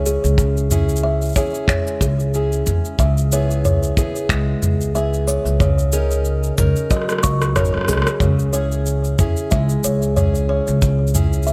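Folktronica at 92 BPM in 4/4 with a light sixteenth-note swing, this delicate, wistful passage in C# dorian is cut from a longer piece and moves from C#m through E/C# and D#m/C# before returning to C#m at 8.2 seconds. A fingerpicked, plugged-in steel-string parlour guitar plays dark, boxy arpeggios with delay, while a pizzicato upright bass carries the low end with a woody, up-front tone. Above them a kalimba adds a second line, its fingertip plucks mellow and ringing from a hollow box, also touched with delay. The drums blend an organic electronic kit of cabasa, finger snaps, rim click and toms, tape-warm and re-recorded in a small room, with a tight acoustic kick that has a rolled-off top and sits forward in the mix. A drum fill from 6.9 to 8.2 seconds leads back to the home chord, and a small room ambience surrounds the whole arrangement.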